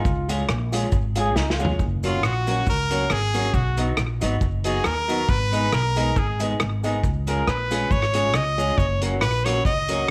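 A forceful, close-miked trumpet with vibrato takes over the melody at 2.1 seconds from a short, bright trombone opening, leading this upbeat, cheerful ska excerpt over woody pizzicato upright bass, a punchy small-room vintage drum kit with slapback echo and a fill at 1.4 seconds, clean hollow-body guitar, boxy slightly detuned upright piano stabs and a very quiet grainy cabasa, all in light reverb.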